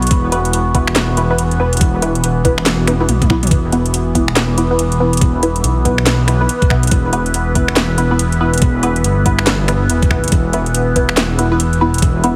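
Heavily compressed with a radio-like squeeze, this brooding, heavy deep dubstep excerpt sits in light digital ambience, its half-time feel carried by a swung groove. A dark, detuned sawtooth bass rumbles up front with a beating, saturated growl, while a slow-attacking drone sustains chords above it, its resonant overtones shifting under chorus and its own reverb. A filtered dub chord stab adds muted, mellow plucks that drift through a phaser and dub echo. The garage drum kit is also up front, mixing a cracking snare, metallic hats, finger snaps, handclaps and toms, with a drum fill from 2.9 to 3.5 seconds. Alongside it an electronic kick knocks with a tape-tinged, layered punch, both drum parts treated with studio reverb.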